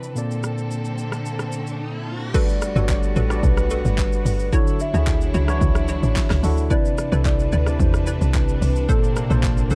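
A worn, slightly out-of-tune electric piano with light overdrive and lush bowed strings carrying sidechain pumping open this relaxed, dark amapiano excerpt at 110 BPM, backed by a punchy, up-front deep house kit of kick, fat snare, handclaps, rim clicks, hi-hats, shaker and crash, while a filter sweep and a background riser build toward the drop at 2.3 seconds. There, a bouncy, detuned square-wave pluck with chorus and tape echo enters, joined a moment later by a soft, woody clarinet-like synth lead treated with chorus and phaser, and at 2.8 seconds a tight, percussive FM log drum bass enters up front. The dry, warm production drifts through lush major-ninth chords from Bbmaj9 to Gmaj9, Dmaj9 and Cmaj9.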